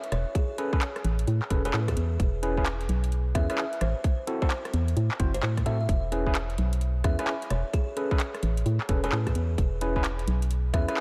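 A garage drum kit of handclaps, metallic hi-hat and rim click opens this sunny, soulful two-step garage excerpt at 130 BPM in E major with swung 16ths, quickly joined by a buzzing, woody kalimba melody trailed by ambient delay, a dark, hollow organ-like FM bass pumping beneath a tight, overdriven kick, and gritty, barky electric piano stabs through a combo amp, all cycling over Amaj9, E6 and Am6 chords.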